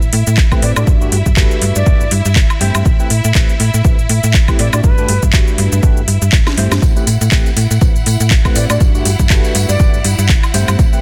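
A swung sixteenth-note groove drives this funky, nostalgic filtered disco house clip, built on a punchy, tape-warm electronic kick up front, an overdriven house kit of cracking snare, metallic hats, handclaps, shaker and woodblock, and a snappy, metallic-attack FM slap bass pumping against the kick. Bright, lush symphonic violins hold sustained chords with gritty 12-bit sampler character, while a clean tine electric piano with phaser fills in the harmony over a looping Am7 to Gmaj7 progression. An airy, expressive jazz flute with tape echo carries the melody, and after a short drum fill a compressed tambourine joins in the background at 6.8 seconds, all within a dry, dense and heavily limited modern mix.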